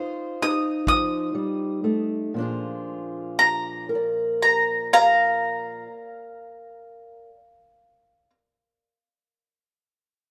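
Laid-back and rollicking, this short cut from a longer acoustic country blues piece moves in a slow 12/8 at 39 BPM with a straight feel, centred in Bb mixolydian. A fingerpicked steel-string parlour guitar, boxy with fresh strings and sitting up front, carries the accompaniment from the start and stops at 7.4 seconds. A mellow, round mandolin with doubled strings takes the melody from 0.4 seconds, picked high and close with a slapback echo that gives it a lively bounce. A punchy but distant kick drum played with brushes makes a single brief appearance around 0.9 seconds, carrying a small-room, roomy character. The opening passage slows down over an F7 chord before the music settles onto Bb7 at 2.4 seconds. Light reverb and a rough home demo mix lend the whole performance an unpolished, front-porch intimacy.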